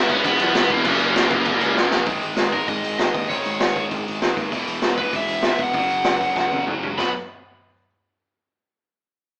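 Boxed into an AM-radio tone with light reverb, this cut from a longer punk rock track sounds like a band playing live in one room, rebellious and upbeat in a straight 4/4. Up front, a raw garage drum kit brings a boomy kick, a medium-tuned snare and gritty, saturated cymbals and toms, with fills at 1.8 seconds and 6.4 seconds. A biting overdriven guitar carries the melody over a pair of bright, picked distorted electric guitars riffing in the background, a fuzzy, growly bass punches beneath, and a double-tracked, high-gain guitar adds heavy riffing until it drops out at 2.1 seconds.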